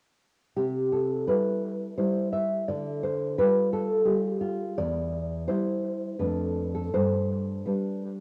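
Sunny and nostalgic, this short excerpt from a longer romantic piece for solo classical guitar moves in three-beat time with uneven, rubato phrasing. A dark, thumb-plucked nylon-string guitar sits up front from 0.6 to 8.2 seconds, ranging from E2 to E5 and passing from C through G and Dm/F before settling on G at 6.9 seconds. Cassette tape colouring and an analog delay give the guitar a worn, homemade character, while a wet studio reverb surrounds the home recording.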